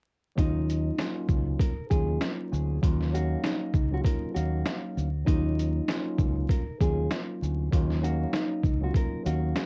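Gritty and tough, this short boom-bap hip-hop passage moves at 98 BPM in 4/4 with a 59% swing on the sixteenths, sitting in Eb minor over a single Ebm9 chord. Up front, a sampler-style trip hop drum kit sounds compressed and pitched down, with a thumpy kick, a medium-tuned snare, hi-hat and shaker, re-recorded in a small room and run through cassette tape. A deep dub fingered electric bass holds the low end between Db2 and Eb2 with a dark, round tone, direct and amped, sitting just as forward as the drums. Further back, a mellow tine electric piano supplies clean accompaniment, while a thumb-plucked classical nylon-string guitar carries the melody between Eb4 and Bb4, both filtered and tape-treated, the guitar also touched by analog delay. The whole cut, running from 0.4 to 9.7 seconds, has the dry, close feel of a home cassette recording, with vinyl crackle and very little reverb.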